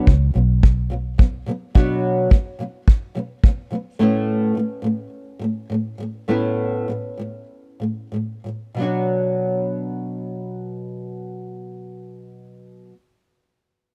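Acoustic pop in B minor with a wistful, tender mood, this excerpt from a longer piece moves at roughly 91-107 BPM in straight 4/4 over Bmadd9 and Aadd9 chords, built on a double-tracked, fingerpicked nylon-string guitar with a warm, boxy tone, joined briefly by a dark, round, foam-muted vintage electric bass that drops out by 1.4 seconds and a punchy kick played with bundle sticks that stops at 3.6 seconds, after which the guitar carries on alone and slows from 4.0 seconds, all captured in a dry, close 1970s-style studio sound with every part up front.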